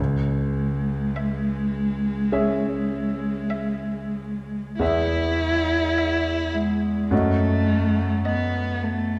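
This is a slow, romantic classical movement for piano trio, with a yearning, solemn mood and a free, rubato feel. A warm cello carries the second line from the opening, sounding up front with vibrato, a soft attack and expressive portamento in its bowed tone. Beside it, a clear concert grand piano provides the accompaniment, with a smooth touch, deep bass and a slightly vintage character, also placed up front. At 1.2 s a rich, even violin enters with the melody, bowed smoothly with vibrato but sitting in the background, well beneath the other two instruments. The harmony shifts twice in this brief passage, which is cut from a longer piece, and the whole trio is heard from further back in a wet concert hall with a long, lingering reverb.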